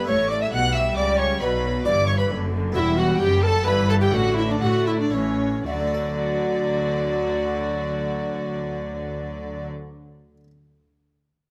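A close, detailed recording with light reverb captures a lively, festive baroque-style concerto movement in D major and 3/4, where a mellow, airy tenor recorder with chiff leads over two gut-string violin lines, a background viola section, a reedy cello section, a dark double bass section and a bright, plucked harpsichord, the music slowing between 2.1 and 5.7 seconds before settling on D, in a short excerpt cut from a longer piece at 111-136 BPM.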